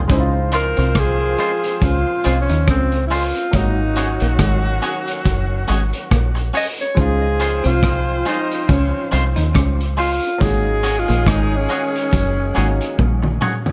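This tender, sweet lovers rock reggae opens with a deep, round dub bass, fingered and foam-muted, sitting up front beside a very quiet baby grand piano playing accompaniment. A vintage drum kit with a muffled, lo-fi small-room sound and a punchy kick joins almost at once, swinging on hi-hat, rim click and toms, while a bright, slightly broken-up guitar through a small old amp plays a twangy riff in the background. At 0.5 seconds a clear alto saxophone takes the lead, soloing in a jazz style with vibrato and tape echo, and a clean, compressed electric guitar adds fingered stabs. A loose horn section with octave doubling carries a second line, its smooth top trailing dub echo. The harmony sways between two chords, and a drum fill at 13.0 seconds closes this cut from a longer piece.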